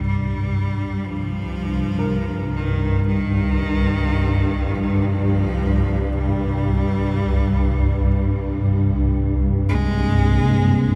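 A swarming, detuned drone sits up front from the opening of this desolate, cavernous dark ambient fragment, its filter sweeping as a biting, nasal cello fades in with vibrato and an airy bow over the very quiet arpeggios of an intimate grand piano with audible action noise, the sound set in a huge reverberant space until a deep, chorused pad slips into the background at 9.8 seconds.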